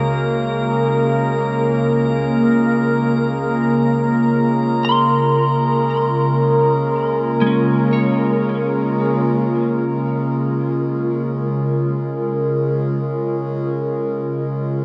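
A warbly, tape-like pad sits up front from the start, holding sustained chords with a slow attack and long release. Its detuned, lo-fi tone is thickened by chorus and its own reverb. Around it, a clean electric guitar picks compressed arpeggios through analog chorus and tape echo, a hand-pumped harmonium breathes a reedy, nasal drone, and a glassy layer of drifting overtones hovers higher up. A very quiet symphonic cello section holds a bowed, lush bass note with smooth vibrato. The mood is weightless and warm; near 9.9 seconds the harmony shifts from Gb/Db to Db6 as the cellos and glass texture fall away, and the guitar stops at 12.9 seconds, leaving pad and harmonium to sustain to the end of this fragment of a longer piece. The dark production is soaked in a huge ambient reverb with a long tail.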